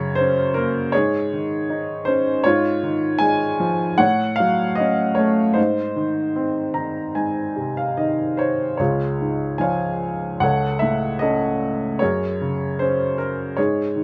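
A moderate studio reverb surrounds a woody, vintage-toned upright piano placed up front with long sustain, playing a calm, lyrical classical solo in a flowing rubato with uneven beats over a gently shifting harmony, adding a brief fill from 6.4 to 8.8 seconds before the opening phrase returns to close this short excerpt.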